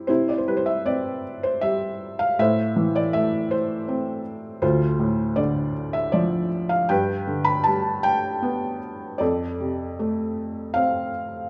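Classical solo piano in C major, tender and calm, unfolds in a rubato 3/4 near 79 BPM as a felt-muted upright piano, soft, intimate and vintage in tone and placed up front, plays alone for the full 11.5 seconds through a C, Am, Dm, G and F progression, bathed in a moderate scoring-stage reverb, in this fragment cut from a longer piece.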